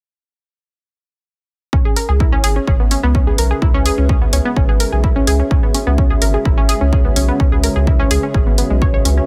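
A straight 4/4 pulse of heavy, tape-warm electronic kick drum drives this dramatic melodic techno excerpt from 1.7 seconds, alongside a round, nasal analog bass and a lush, warbling unison pluck playing sidechain-pumped arpeggios with dub echo and cassette-tape grit, with an overdriven hi-hat joining at 2.0 seconds, while a moody dark analog pad with chorus and phaser, a mellow deep dark ambient pad and a very quiet, swarming granular drone fill out a dry mix.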